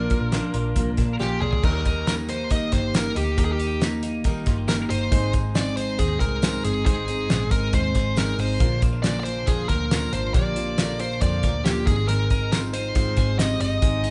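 A distorted, bluesy lead guitar carries the melody over twangy, spring-reverbed twelve-string electric arpeggios, a shimmering twelve-string acoustic, a woody upright piano in the background and a round, foam-muted bass from the very start of this youthful, bright, jangly indie pop excerpt in Eb major at 138 BPM, as an up-front, cloth-damped thuddy drum kit with a fat snare plays a fill from 1.2 to 1.6 seconds before a very quiet jingly tambourine joins at 1.6 seconds, all played live in one room with light reverb.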